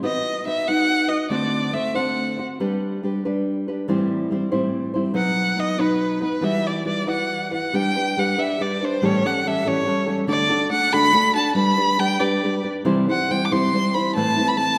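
A single bowed violin, rich and focused with a smooth top and singing vibrato, carries the melody up front in this festive, romantic mariachi folk excerpt in a rubato 6/8, pausing at 2.4 seconds and returning at 5.2 seconds. A bright, fingerpicked classical nylon-string guitar accompanies throughout, also close at hand. A wet concert hall reverb surrounds both, and the harmony brightens from minor to major at 7.7 seconds as the second section begins.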